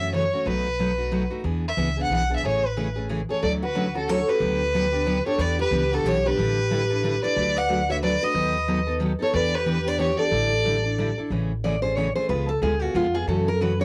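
A rich, bowed violin with smooth vibrato carries the melody through cassette-tape coloring until 11.1 s in this playful, charming jazz manouche excerpt at 182 BPM in a swung 3/4, shifting from A major to D major, over a bright picked steel-string acoustic guitar accompaniment and a woody, thumpy gut-string upright bass with transformer saturation, while a second bright, fresh-stringed picked guitar joins at 3.3 s and a steel-string guitar solo follows from 11.3 s, all captured as a home cassette recording in a wet booth.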